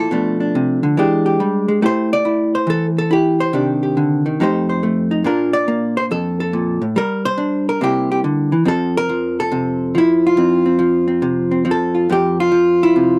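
A dark, clean, compressed vintage hollow-body electric jazz guitar sits up front and plays alone throughout this relaxed, playful solo jazz excerpt at 140 BPM with a swung 4/4 feel in F major, its picked chords moving from Bm7b5 and E7#9 through Am7, F9 and Bbmaj7 to a settled Fmaj7 around 8.7 seconds, all captured in a dry, close 1970s-style studio sound touched with light reverb.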